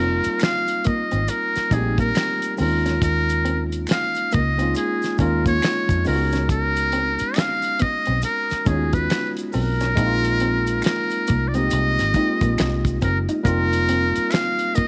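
R&B with a neo-soul lean, this sultry, introspective passage, cut from a longer piece, moves at an unhurried pace with a swung sixteenth-note feel over suspended ninth chords. A trumpet with a metal mute carries the melody up front, its buzzy, thin, brilliant tone close-miked and shaded with vibrato and scooped notes in a jazz solo style. Beneath it, a worn, slightly out-of-tune tine electric piano supplies clean, direct accompaniment, while a dark, compressed hollow-body jazz guitar picks a second line in the background. A foam-muted fingered electric bass gives a round, amped low end. From 0.2 seconds, a dry, damped 70s drum kit with a fat snare, tight kick, hi-hat and finger snaps joins, alongside faint saturated maracas, group handclaps and snaps, all set in a light, small-room reverb.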